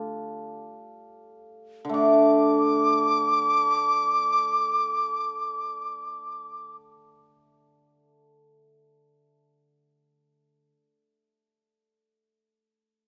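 A shimmering, ringing hammered dulcimer opens this graceful, tender excerpt of Chinese traditional music in free time and D yu mode, slowing as it goes, before a mellow large dizi enters at 1.9 s with an airy, buzzing bamboo tone, crisp chiffing attack and unsteady vibrato held high on a single note until 6.7 s, while the up-front dulcimer continues its low accompaniment to 10.7 s in a moderate scoring-stage reverb.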